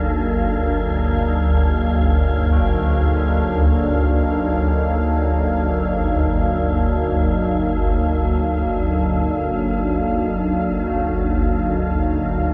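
Floating in free time, this dark ambient drone piece, cut from a longer work, has a desolate mood and a tuning of A4 = 437 Hz, centred on a single Ebmadd9 chord. Up front, a swarming, warbling low drone of detuned sine voices churns with a moving notch and granular grit, giving it a tense, vintage edge beneath a sweeping resonant sawtooth pad whose sustained chords shimmer with chorus and a filter swell. Deep in the background, an airy, breathy wind-like tuned noise texture hovers on its own reverb, and the synth texture is faded out across the passage. From 2.5 seconds, very quiet tubular bells, struck with a rawhide hammer and heard close and dry, add solemn, metallic arpeggios. A huge ambient reverb with an 8.2-second decay surrounds the sound, and the top end is rolled off above 7.6 kHz.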